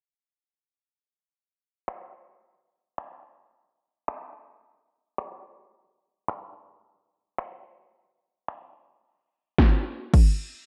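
This pop excerpt moves at 109 BPM in a straight 4/4 and carries a euphoric, carefree mood. A punchy analog drum machine enters at 1.9 s and runs to 10.3 s, built from kick drum, snare drum, finger snaps and crash cymbal. Its electronic kick and snare hit hard, and overdrive gives the kit a gritty edge as it sits up front in the mix. The overall production is dark and warm, rounded off by a low-pass filter and a light reverb. Cut from a longer piece, this short passage keeps its focus entirely on that punchy rhythm.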